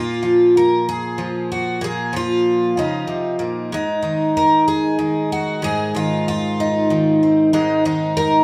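A picked twelve-string acoustic guitar carries this brief, pastoral folk passage alone, its fresh strings giving a shimmering, octave-doubled, full-bodied jumbo tone that sits up front in the mix. At an unhurried 63 BPM in a straight 6/8, it moves from B-flat minor to A-flat at 3.7 seconds, ranging from Ab2 to Bb4, in a tuning pitched slightly high at A4 = 444 Hz. A moderate studio reverb surrounds the playing with a live-room feel, and the warm fragment is cut from a longer piece, ending at 8.4 seconds.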